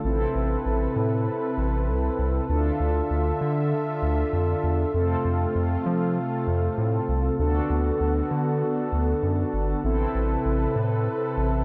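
Synth-pop with a nostalgic yet upbeat mood, this 11.6-second passage pairs mellow, brassy synth brass carrying the accompaniment through chorus, tape echo and shimmer reverb, a smooth, detuned vintage pad holding sustained chords with subtle chorus, and a round, deep analog bass up front, as the harmony moves through Amadd9, Dmadd9, F and D6 before returning to Amadd9 in a lightly reverberant, echo-heavy mix.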